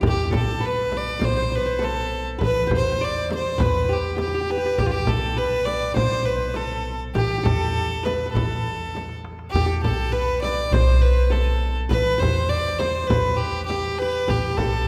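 Qanun, upright bass, darbuka and frame drum sound together from the opening moment, and a clear solo violin takes the melody at 0.1 seconds in this soulful, longing Arabic maqam ensemble piece, cut from a longer work. It moves at 101 BPM in a straight 4/4, tuned to A4 = 445 Hz. The bowed violin sits up front and close, its nasal, earthy tone carrying a light vibrato and an airy bow. Beneath it, the plectrum-plucked qanun adds a bright-edged second line from its triple strings, while the pizzicato upright bass gives a woody, warm foundation on steel strings. The darbuka's clay shell and natural skin stay close and dry in the background, joined by the deep, large frame drum struck with hard hands, and a drum fill stands out from 8.9 to 9.5 seconds. A wet concert-hall reverb with a 2.1-second decay places the ensemble in a church or concert hall.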